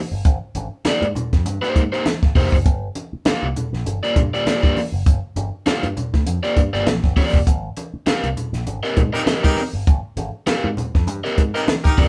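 A compact cocktail drum kit sits up front with a dark, smooth tone, a high-tuned snare and a punchy kick, driving this cool, funky excerpt at 100 BPM in 4/4 with a light sixteenth-note swing. A bright picked electric bass with an envelope filter and a crunchy, overdriven guitar carry the Abmaj9 to Gm7 changes, while ringing congas sit in the background. The band plays live in one room with moderate studio reverb, and a clear horn section with vibrato joins at 9.1 seconds.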